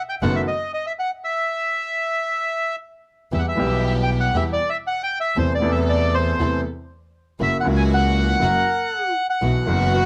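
A rubato 4/4 tango at 118 BPM in E minor, sultry and passionate, this excerpt sets a reedy, vintage bandoneon melody, up front and bathed in plate reverb, over a natural-sounding baby grand piano accompaniment, soft-attack bowed string stabs and a biting, earthy bowed double bass, while a mellow, airy silver flute adds a distant second line from 8.4 s and an expressive cello with portamento slips in at 9.9 s, as the harmony moves from B7 through Em and F#7 to Bsus4 in close, detailed sound.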